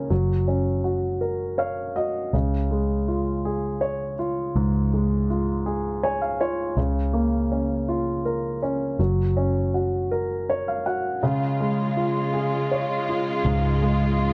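A swaying 6/8 pulse, counted in dotted quarters at 54 BPM with a straight feel, carries this heartfelt pop excerpt in Db major, tuned to A4 = 437 Hz. A polished, up-front baby grand piano plays the accompaniment throughout, adding three brief fills along the way. Beneath it, a vintage muted fingered electric bass gives a dark, round, foam-muted low end. At 11.2 s a lush bowed string section enters with smooth, even sustained chords carrying gentle vibrato. The harmony moves from Gb to Db, through Bbm/Db, and back to Gb before settling on Db. The sound is dry and close, in the manner of a 1970s studio recording.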